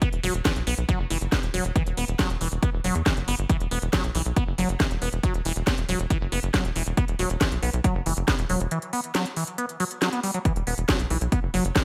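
A digital ambience frames this psychedelic trance cut from a longer piece, an alien passage in E minor at 138 BPM with a straight 4/4 pulse and slightly flat tuning. An overdriven electronic kick and a layered techno kit with a cracking snare and smooth hats sit up front, while a tight sequencer bass in sawtooth and square tones drives underneath with punchy filter plucks. Above them a squelchy, resonant acid riff spans E3 to B3, saturated and coloured by phaser, delay and sidechain pumping, before a break at 8.7 seconds gives way to a drop at 10.5 seconds.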